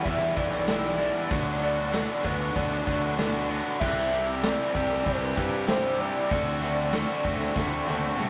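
A straight 96 BPM indie rock pulse in 4/4 drives this wistful, jangly excerpt, where a vintage drum kit with dark cymbals and a tight kick rolls into a fill at 7.5 seconds beneath a growly fuzz bass, a crunchy overdriven guitar and an up-front, lo-fi garage guitar riffing over Em7, Bm/D, C and D7, while a hollow, woody square-wave lead with chorus and vibrato carries the melody through a rough rehearsal-room sound with tube saturation.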